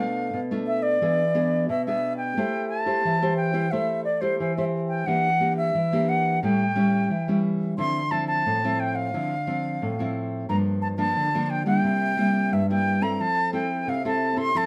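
A straight 4/4 samba pulse at 89 BPM carries this lively, joyful fragment tuned to A4 = 444 Hz, where an airy, reedy concert flute sings the melody between C5 and C6 with soft-attacked, vibrato-laced tone while a fingerpicked nylon-string guitar in classical style supplies acoustic accompaniment from G2 to C5, both up front in a wet studio reverb that captures the pair playing live in one room as the harmony moves from Bm7b5 and E7 through Dm9 to settle on Fmaj7 by 13.2 seconds.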